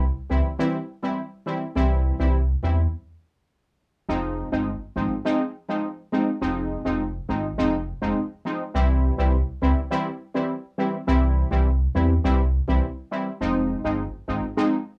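Dancehall in F minor at 103 BPM, this short cut from a longer piece feels tough and hypnotic in a straight 4/4. A deep, full sub bass with an octave sits up front from the start, its sine-and-triangle tone striking quickly and sustaining through to 14.4 seconds. Over it, a brassy synth brass stab carries the accompaniment in the middle register, punchy and bright, built from detuned sawtooth and triangle waves that are wave-folded and shaped by a filter sweep and chorus, each hit attacking fast and then decaying. A stop falls between 2.9 and 4.1 seconds before the music resumes on an Fm7 chord, moving back to C and then returning to Fm7 near the close. The parts sit in a small room with light reverb, giving the sound a close, compact ambience.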